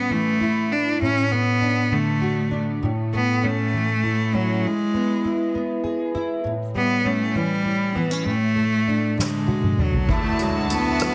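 A clear, biting cello carries the melody of this tender, romantic pop ballad, played with intense vibrato by a single bowed player and trailed by tape echo. Set in A major at 66 BPM in a straight six-eight, the short excerpt is cut from a longer piece and moves through chords such as A7, D/A and E. Beneath the cello, a fingerpicked, plugged-in steel-string jumbo guitar with old strings gives a woody, full-bodied accompaniment, double-tracked and up front. A soft-mallet drum kit with dark cymbals and a boomy kick enters at 9.2 seconds with a fill that leads into a new section at 10.1 seconds. There a lush, smooth studio string section joins on sustained chords over a Dadd9, all within light reverb and studio ambience.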